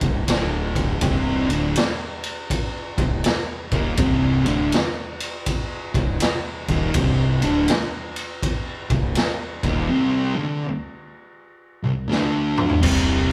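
Swung at 81 BPM in 4/4, this ominous, heavy stoner and doom metal excerpt in C minor sits on one Cm chord as two dark, thick fuzz guitars (one set back in the background) grind out a low riff over a round, overdriven fingered bass and a gritty, saturated garage drum kit with a boomy kick, playing up front, whose fill at 12.1 seconds gives way to a bright, very quiet double-tracked distorted guitar entering at 12.8 seconds, all captured as a band playing live in one room with moderate large studio reverb.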